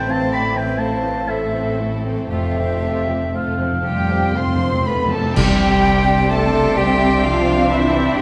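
Bathed in a wet scoring-stage reverb, this hopeful, tender excerpt of cinematic film score drifts in rubato 3/4 at 57-66 BPM, with veiled con sordino violin sections carrying the melody and a second line over muted violas, cellos and double basses, an airy flute and distant oboe adding lines, mellow French horns holding chords and a very quiet, ringing harp playing arpeggios through Am and F, while timpani, bright clash cymbals, a cymbal swell and concert bass drum enter at 2.3 s, a dark solo muted cello takes up the melody at 3.8 s, and a clear clarinet joins as the music lands on Cadd9 at 5.4 s.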